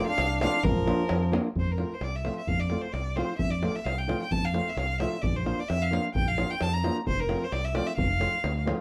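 A clear, focused bowed violin with vibrato leads this exuberant, wild Balkan wedding-band folk excerpt in a swung 2/4, backed by thumb-plucked warm flamenco guitar, a bright, up-front fingered electric bass and a deep, vintage-sounding, band-limited davul, while a reedy, mellow accordion plays a second line in the background only until 1.3 seconds, all set in light reverb.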